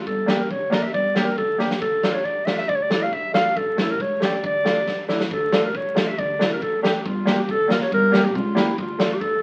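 Klezmer at 138 BPM in 2/4, set in D harmonic minor, with a festive yet bittersweet mood in this short cut from a longer piece. A clarinet carries the melody up front in a classical, soloistic style, its tone warm. An upright bass plays pizzicato beneath it with a woody, steel-string sound, while a clear upright piano adds polished, intimate accompaniment where the action noise of the instrument can be heard. A huge arena drum kit, punchy in the kick and medium-tuned in the snare, sits up front with a big-room, natural character and plays fills near 1.6 seconds and between 4.9 and 5.3 seconds. The harmony moves through Gm, Dm and A, and the same section repeats from 5.3 seconds. Moderate studio reverb and the crackle of a very old 78 rpm record give the whole sound an aged surface.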